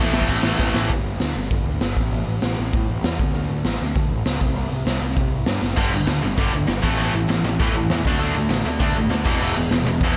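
A tight, distorted electric guitar riff and a fuzzy, picked electric bass open this rowdy, upbeat punk rock excerpt at 197 BPM in a straight 4/4, with a raw garage drum kit joining at 0.1 seconds and a drum fill from 0.6 to 0.9 seconds. The guitar, bright and double-tracked, drops out at 0.9 seconds as the groove shifts into half time, leaving the overdriven bass and drums to carry the power-chord progression through G5, A5, D5 and C5. The drums sit up front with a punchy kick, a medium-tuned snare, hi-hat and crash cymbal, sounding saturated and gritty in a pumping stone room with a rolled-off top. After another drum fill at 5.6 seconds, the guitar returns at 5.8 seconds to push the riff through G5, A5, D5 and E5. The punchy bass has a direct, amped bite, the mix carries little reverb, and the tuning sits slightly sharp at A4 = 441 Hz.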